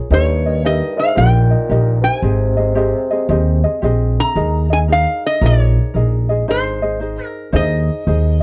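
Hawaiian music with a relaxed, sunny mood and a lilting swing, cut from a longer piece. A metal-body resonator slide guitar carries the melody up front, its fingerpicked, nasal and metallic tone gliding high over the accompaniment. A light ukulele plucks soft chords with the thumb beneath it, while a woody pizzicato upright bass on steel strings sits prominently in the mix with a touch of transformer saturation. A mellow bassoon with light vibrato adds a low, vintage-flavoured second line in a classical style before dropping out at 3.8 seconds. The sound is dry and close, like a 1970s studio recording, and the harmony moves from Eb through Abmaj7 and Ebsus4 to settle on Ab.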